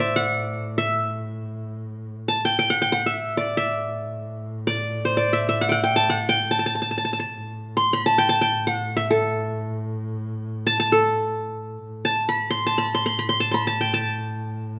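Unmeasured and in free time, this short passage from a longer Turkish makam piece unfolds in makam Hüseyni on A with a longing, hypnotic mood. The plucked qanun carries the melody within a range of A4 to C6, sitting up front with a bright-edged, triple-strung shimmer. Beneath it, a single bowed double bass holds a low A2 drone, its soft attack, vibrato and portamento giving the sustained note an expressive, singing quality at a much lower level than the qanun. Both parts sound together from 0.0 to 14.8 seconds, with the opening material returning at 11.9 seconds. A moderate recital-hall reverb lends the ensemble a gentle sense of space.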